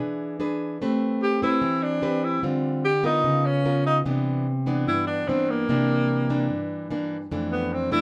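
Wistful and intimate, this bossa nova excerpt in A minor at 148 BPM sets a bright, fingerpicked nylon-string guitar with audible finger squeak under a breathy tenor saxophone that enters at 1.2 seconds to carry the melody in a mellow subtone with vibrato and scooped notes, both up front in a light reverb over chords moving from Am9 through Dm7 and Cmaj9 to F6.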